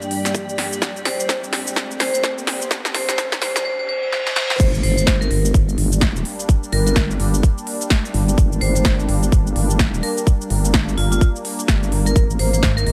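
A sweeping, detuned sawtooth pad and a blurred granular cloud pad open this gritty, aggressive bass house excerpt in G phrygian at 127 BPM, with a big-room drum kit of crisp hats, punchy snare, shaker and crash playing a fill while a filter sweep, a background riser and a reverse cymbal build toward the drop. A tight, up-front electronic kick and a ringing hard-mallet vibraphone with digital delay and slow motor vibrato join early, and at 4.6 seconds the drop lands with an impact and a dark, nasal vowel-sweep wobble bass carrying chorus, tube saturation and sidechain pumping. The cloud pad returns near the end as the chords move from Gm to Absus2, and a metallic FM bass appears at 12.6 seconds.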